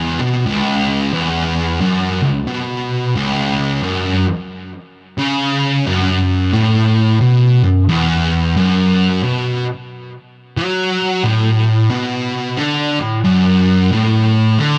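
A swung eighth-note feel in 4/4 drives this heavy, brooding metal passage, cut from a longer piece, with a lone electric guitar playing throughout its 14.8 seconds. The picked, double-tracked guitar sits up front with a thick, dark fuzz tone, its distortion trailed by tape echo and set in a light reverb that surrounds its low register.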